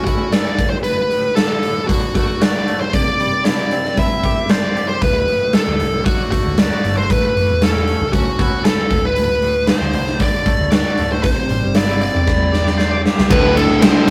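A dark, high-gain lead guitar sits up front from the opening, carrying a restless melody over a clean, twangy electric guitar that spins arpeggios through a tremolo. A huge arena drum kit joins almost at once, with a punchy kick, a medium-tuned snare and bright cymbals across hi-hat and ride, giving this quiet-loud alternative rock excerpt a straight, anthemic drive. At 5.0 seconds a round, hollow-body short-scale bass arrives with a dark, amped tone, anchoring the chords as they move among D, Cadd9 and Aadd9. A drum fill at 12.3 seconds leads into a heavier close, where a compressed distorted guitar in the background and a louder, fuzz-laden guitar slam onto a D5 power chord riff. The whole thing has the rough feel of a rehearsal-room take, set in a moderate stone room reverb.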